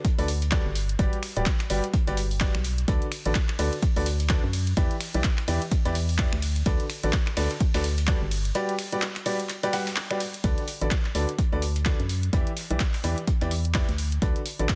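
An overdriven, punchy electronic kick sits up front from the first beat of this joyful, uplifting piano house excerpt, joined by a saturated analog drum machine playing finger snaps, handclaps, hi-hat and ride, and a very quiet, gritty sampler-style soul kit adding compressed hi-hat and snare from a small room. At 0.2 s a bright upright piano riff with audible action noise and woody character enters, pumping against the kick and trailed by delay, over a hollow, dark, organ-like FM bass with a fast attack and decaying tone that pumps too, all on a swung groove cycling D6, Gmaj7 and Em7. A break arrives at 8.6 s before a new section at 10.4 s, set in digital ambience with a dense, heavily limited modern master.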